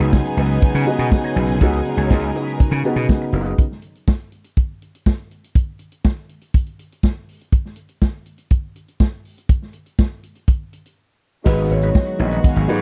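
A glamorous, danceable disco excerpt at 122 BPM opens on a full band over a C#9sus4 chord: punchy, overdriven slap bass and a vintage drum kit with dark cymbals lead up front, joined by a boxy grand piano, lush bowed strings with reedy period-style strings behind them, a lo-fi electric guitar through wah and phaser, and a grainy egg shaker. At 3.6 seconds the rest of the band drops away and the drums carry on alone, with a break at 11.0 seconds. The piano slips back in at 11.4 seconds, and the rest of the band returns on G#m7 at 11.5 seconds, where a ringing, metallic vibraphone takes the melody, with the lush strings rejoining at 12.4 seconds, all in a dry, close 1970s-style studio sound.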